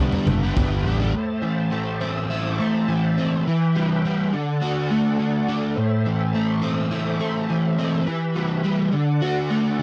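Dark and mysterious, this psychedelic rock excerpt centers on an up-front, double-tracked overdriven semi-hollow guitar riff with flanger, set over sustained tonewheel organ chords colored by slow rotary speaker, chorus vibrato and key click, while a gritty, saturated breakbeat kit of kick and toms and a round, amped fingered bass appear only briefly at the start, both gone by 1.1 seconds, leaving guitar and organ to carry an Am, Em and D progression in a dry, close sound.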